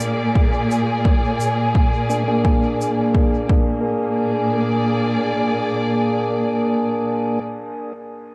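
An echo-heavy mix bathed in moderate spring reverb sets a peaceful, hazy mood in this ambient dub excerpt at 86 BPM in Bb mixolydian, resting on a Bb7 chord. Dark, veiled con sordino strings hold sustained chords with vibrato, while a punchy, layered electronic kick sits up front and a rolled-off acoustic shaker with dub echo stops at 2.9 seconds. From 2.1 seconds a clear tonewheel organ with audible key click plays stabs through a low-pass filter sweep and dub echo, its rotary speaker stopped.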